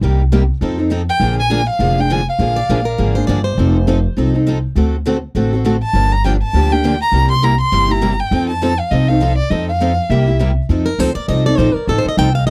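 The violin takes the lead in this lively, swinging piece of acoustic string swing in the jazz manouche style, an excerpt cut from a longer performance at 202 BPM in 4/4 with swung eighths and an F mixolydian colour. A single bowed violin sits close and up front, its soft attack, vibrato and portamento giving the melody an expressive, singing quality in two phrases, from 1.1 to 3.1 s and again from 5.8 to 10.4 s. Two picked steel-string acoustic guitars carry the accompaniment throughout: one has a concert tone with audible finger squeak, while the other is a bright, boxy parlour guitar placed in the background. Beneath them an upright bass is plucked with a woody, thumpy sound and sits prominently in the mix. A plugged-in swing-style acoustic guitar adds a picked second line with tape echo, appearing briefly around 2.6 s and returning near the end, where one steel-string guitar also takes a short solo from 10.7 s as the harmony moves back to F7. 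The recording is dry and intimate, with little reverb and the close feel of a 1970s studio session.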